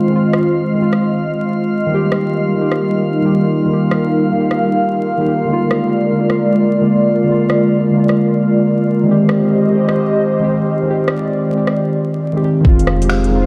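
Muted, felt-like synth keys sit up front with a dark, gritty 12-bit sampler edge, chorus, sidechain pumping and a diffuse ambient delay, while a breathy pad carries a filter sweep over sustained chords and faint glassy harmonics drift beneath them in this ghostly, melancholic future garage excerpt. A swung garage kit of finger snaps, metallic hi-hats and rim clicks ticks along through the Fm7, Eb, Bb7 and Abmaj7 changes, and at 12.6 s a knocking electronic kick and a round, deep sub bass arrive together. The whole dreamy mix is soaked in church reverb and dusted with vinyl crackle.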